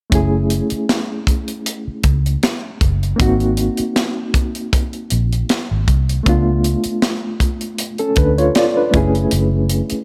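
Smooth and cinematic, this short cut from a lush 1970s-style soul piece sits at a relaxed 78 BPM with a light swing on the sixteenths, as a reedy, slightly out-of-tune electric piano with fast tremolo carries the F#m9 to G#9 to C#7b9b13 harmony over a dark, round, foam-muted fingered bass and a tight, up-front funk kit of hi-hat, kick and high-tuned snare, all set in light studio reverb.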